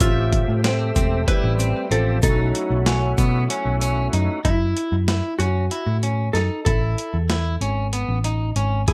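A driving, bright progressive instrumental cut from a longer piece opens with the full band at once in a straight 7/8 at 189 BPM counted in eighths, moving through Fmaj9 and B7sus4 before shifting to F#m7 and Amaj7. Up front, a boom bap sampler-style kit comes through with a thumpy kick, high-tuned snare and hi-hat, its compressed sound made gritty by overdrive, while a round, dark hollow-body short-scale bass, picked and amped, anchors the low end. A clean, compressed hollow-body jazz guitar carries the melody with delay, and an electric guitar at the edge of break-up plays picked arpeggios in plate reverb. In the opening stretch, a thick overdriven tonewheel organ with chorus vibrato and a slow rotary speaker fills in the harmony, a cup-muted trombone adds a soft, veiled second line with light vibrato, and a grainy egg shaker sits in the background. The trombone drops out at 3.8 seconds, the shaker at 4.1 and the organ at 4.4, leaving the guitars, bass and drums to carry the second half under a light overall reverb.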